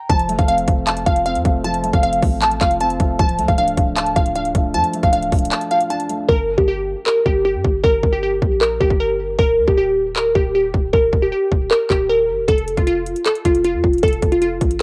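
Dark and hard-hitting, this trap-flavored hip hop excerpt moves at 155 BPM in a half-time feel, centered on G minor and cut from a longer piece. A glassy, crystalline wavetable pluck carries the melody from start to finish, its detuned, full-bodied tone softened by chorus, a low-pass filter and a cassette-tape haze that keeps it mellow and up front. Beneath it, a felt-muted upright piano adds soft, intimate accompaniment with audible action noise, playing only until 6.3 seconds. A punchy, heavy 808-style bass with a sine core and a noise layer anchors the low end, while the electronic trap kit drives things with a hard-clipped kick, handclaps and metallic hi-hats, also treated with cassette tape. After a brief break from 5.5 to 6.3 seconds, the hi-hats drop out until 12.5 seconds as the harmony moves from G minor through E-flat to F. The dry, home-cassette sound keeps the whole track close and gritty.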